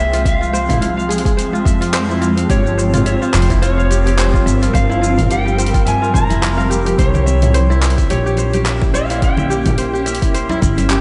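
Opening on a dark, slightly broken-up electric slide guitar melody with analog delay over a cloudy, evolving granular pad that pumps to the sidechain, ringing fingerpicked kora arpeggios and a woody pizzicato upright bass with tube saturation, this hypnotic, mystical organic downtempo fragment at 107 BPM with swung 16ths moves through Fmadd9, Gm7b5 and C7b9 as a tape-warm deep house kit of handclaps, hi-hat, shaker and toms and a deep electronic kick join almost at once, hard-hand congas arrive in the background at 7.1 seconds, and a lush hall reverb soaks the dreamy mix.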